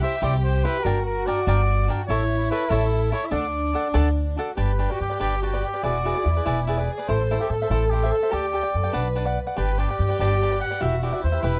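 Proud and romantic, this short excerpt of Mexican mariachi folk moves at 96 BPM in a straight 6/8, starting in D major and shifting to G major at 4.6 seconds. A mellow, distant trumpet carries the classical-style melody with light vibrato over a soft-attack, sul tasto chamber violin section playing an intimate second line. A crisp, picked cavaquinho and a woody, dark pizzicato upright bass, entering at 0.2 seconds and sitting up front, fill out the dry, close 1970s-style studio sound in a small room.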